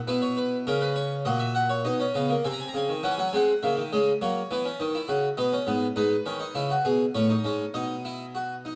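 In a straight triple metre, this brief, stately passage cut from a longer baroque-style three-part fugue features a solo Flemish-style harpsichord. Its three sets of strings give a full, brilliant plucked tone that sits up front. Close, detailed miking captures the instrument inside a moderate recital-hall reverb, and the elegant opening gives way to a new section at 2.4 seconds.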